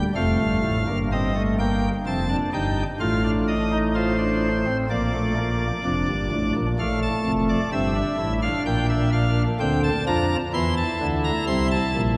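A pipe organ's nasal cornet stop carries a baroque-style three-part fugue from the first moment, its pipes speaking with a crisp chiff and a trembling tremulant, placed up front and ranging from F1 to C6. The mood is stately yet lively, moving at 64 BPM in a straight 4/4 in Bb major, with harmony passing through Bb, Cm7/G, F7/A, F and Gm7/Bb. A lush church reverb with a 3.6-second decay surrounds the organ across this 12.2-second excerpt from a longer piece.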